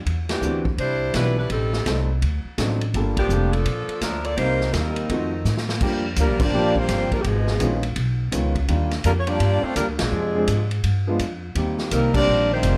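Sultry and swinging, this big band swing passage in G minor moves at 167 BPM in 4/4 with a swung eighth-note feel, and it is cut from a longer piece. A clear, up-front saxophone section carries the melody with vibrato and a soft attack, while a woody, thumpy upright bass plucks the low end just as close to the ear. A concert grand piano with deep bass and long sustain fills in the harmony, and a distant, roomy drum kit with dark cymbals, a medium-tuned snare and a boomy kick sits further back in the mix. A close-miked trombone section with light vibrato joins as a second line at 4.7 seconds, shortly before a drum fill leads into a new section at 5.8 seconds. Band accents punctuate the passage over lush jazz harmony such as Cmaj9#11, D7b9 and Ebmaj9, all inside a dark production with light reverb.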